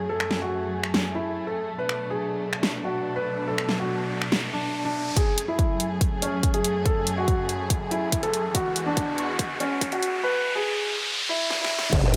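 A felt-muted upright piano plays a soft, mellow melody over sustained chords from a bowed string section, opening this heavy, aggressive half-time dubstep passage in F# minor at 142 BPM, cut from a longer piece. The piano sits up front with digital delay, while the intimate strings, played sul tasto with vibrato, are low-pass filtered and pump under sidechain. The dubstep kit arrives almost at once with finger snaps, hi-hat, crash cymbal and a huge, layered snare, and at 5.2 seconds a punchy electronic kick joins as a riser, a filter sweep and drum fills drive a build-up over chords moving from F#madd9 to Eadd9. An impact lands at 11.9 seconds, where a saturated, compressed wobble bass on F#1, treated with chorus and overdrive, bursts in with its formant-swept pulse just as the piano stops. Electronic riser and sub-drop effects colour the buildup, and the drums feel up front and produced under light reverb, re-recorded in a small room.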